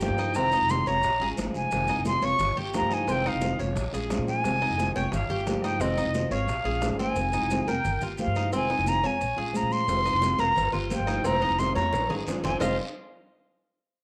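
Danceable and warm, this excerpt from a longer piece is Cuban son and guajira in F minor, moving at a brisk 176 BPM in straight 4/4. An airy, bright concert flute carries the melody up front, close-miked with vibrato, a soft attack and an expressive touch, while a thumb-plucked nylon-string guitar with fresh strings and audible finger squeak supplies classical accompaniment. The Cuban tres picks metallic arpeggios on its double strings, some doubled at the octave, and a woody pizzicato upright bass anchors the low end. In the background, congas with a thick, damped skin, tight high-tuned bongos and cowbell struck with hard hands, a raspy guiro and grainy maracas fill out the percussion, with the bongos and cowbell dropping out between 7.2 and 9.9 seconds before a drum fill at 11.2 seconds. The chords cycle through Fm7, Bbm7 and Gm7b5 before landing on F7(no3) at 12.6 seconds, all bathed in a wet spring reverb.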